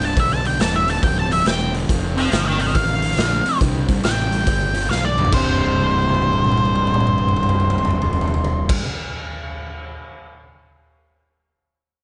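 A gritty, raunchy clip of blues rock and southern rock, with light reverb and a rolled-off top, swinging in four. An up-front octave-fuzz lead guitar, dark and distorted with wah and slapback echo, carries the melody over a double-tracked, overdriven semi-hollow guitar riff and a growly fuzz fingered bass. A punchy, raw garage drum kit in a bright stone room pumps underneath, throws a fill at 4.9 seconds into the second section, and plays on alone until 10.2 seconds.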